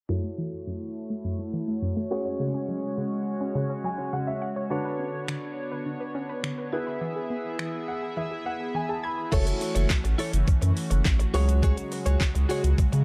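Dance-pop with a confident, bittersweet mood, opening on a natural-sounding baby grand piano, a shimmering retro pulse-width pad and a round, detuned analog pluck arpeggio, all pumping against the sidechain under a filter sweep, with piano fills at 3.6 and 7.6 seconds. An electronic drum kit with a knocking kick, fat snare and metallic hats arrives up front at 5.3 seconds, and at 9.3 seconds a thick, saturated sub bass takes over the low end alongside a bright, clean, direct-recorded electric guitar riff and a very quiet, grainy egg shaker. The production is dark and dry, with the drums and bass sitting forward in this short cut from a longer piece.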